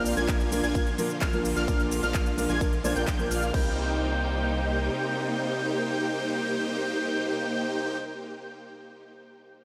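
Euphoric and powerful, this festival progressive house passage, cut from a longer piece, opens straight into a drop with huge, lush supersaw chords carrying a bright, detuned riff up front through a phaser and delay. Above them, a thick, nasal unison lead plays high arpeggios with vibrato, chorus and delay, while a natural-sounding baby grand piano supplies accompaniment and a distant, biting string section holds intense bowed chords beneath. A deep, saturated sub bass anchors the harmony as it moves from Bb to Cm7, and every one of these pitched parts breathes with sidechain pumping. A punchy, up-front electronic kick drives the drop alongside a big-room kit of crash, handclaps, crisp hi-hats, ride and shaker, with a tape-warm, room-recorded character; both drum parts stop at 3.6 seconds and the bass drops out at 4.9 seconds. The whole mix is soaked in a dreamy, huge ambient reverb that lets the remaining chords, lead, piano and strings bloom in a vast space.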